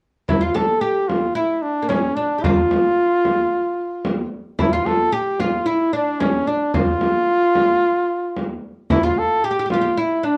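Longing and melancholic, this Arabic maqam ensemble piece moves at a straight 112 BPM in 4/4, with a warm, close-miked flugelhorn carrying the melody up front in a jazz style with vibrato. Beneath it, a bright, woody fretless oud with plectrum-plucked double strings plays a second line, while a deep, large frame drum sounds distant in a large room, all three entering at 0.3 seconds within a dark production and wet studio reverb.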